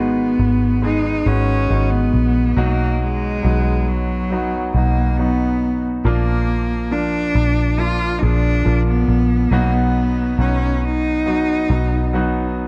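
A slow pop ballad excerpt with a longing, heartbroken mood, moving in a straight, unhurried 4/4 over its roughly 12.7 seconds. A single bowed cello carries the melody in a clear, focused voice with vibrato, sitting up front. Beneath it, a concert grand piano provides open, warm accompaniment with deep bass. A vintage fingered electric bass, foam-muted and amped, adds a round, dark low end that sits close and prominent. The harmony drifts from Abm7 through B and Bb before returning to B, and the whole takes place in a dark production with light reverb and a sense of studio ambience.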